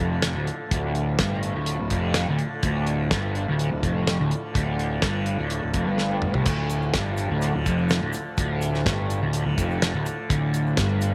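This dark, hypnotic psychedelic rock passage, cut from a longer piece, opens on a crunchy, double-tracked overdriven guitar riff placed up front and churned through a rotary speaker. A round, punchy fuzz bass sits low beneath it, while a buzzing, shimmering tanpura drone hums in the background and a very quiet, reedy combo organ holds sustained chords with heavy vibrato. A damped 70s drum kit enters at 0.2 seconds with a dry, mid-forward sound, a fat snare and a tight kick, and works across crash, hi-hat and toms in a straight groove. After a drum fill at 6.0 seconds, a grainy, bright egg shaker joins at 6.5 seconds, tucked far back in the mix. A moderate spring reverb lends the whole mix a studio air.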